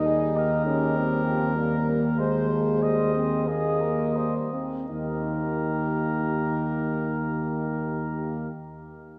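A rubato 4/4 pulse drifting between 79 and 100 BPM slows through the first 4.9 seconds of this short cut from a noble, stately classical brass quintet in Eb major, the harmony moving from Eb to Ab over an Eb bass at 2.2 seconds and settling back on Eb at 4.9 seconds. A soft-attacked, distant, roomy trumpet carries the melody over a warm flugelhorn second line, while a present French horn and a very quiet, brilliant, vintage-toned trombone fill in the accompaniment above an up-front, mellow tuba holding a low Eb with light vibrato and a smooth top. A wet cathedral reverb with a 4.3-second decay surrounds the ensemble.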